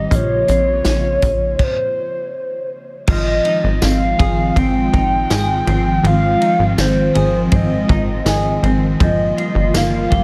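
A woody, clarinet-like synth lead carries the melody up front, its full-bodied tone shimmering with chorus, phaser, vibrato and tape echo. This brief cut from a longer dream pop piece has an ethereal, dreamy mood and a straight feel at 81 BPM. Beneath it, a soft, flute-like pad holds sustained chords, warbling and mellow under an ensemble chorus, while a clean semi-hollow electric guitar picks arpeggios through lush chorus and tape echo. A punchy, plucky analog bass with a fast, decaying attack sits up front alongside a vintage acoustic drum kit that joins at 0.1 seconds, with a tight kick, a medium-tuned snare, dark cymbals and tambourine. A stop falls between 1.6 and 3.1 seconds before the music moves into a new section over an Ab6 chord, all set in light reverb and small room ambience.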